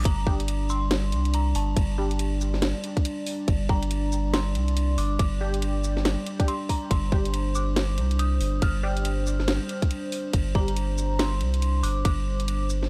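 In this meditative, heavy fragment of deep dubstep, an eerie, inharmonic synth bell with chorus and dub echo opens over a moody, detuned analog pad and a round, soft sub bass with tube saturation, while a tight, up-front electronic kick and a garage kit of cracking snare, hi-hat, shaker and crash cymbal, both touched with studio reverb, carry a swung half-time feel, and a muted, filtered chord stab washed in phaser and dub echo sits in the background from 0.3 to 10.7 seconds, all within a dry, gritty sound.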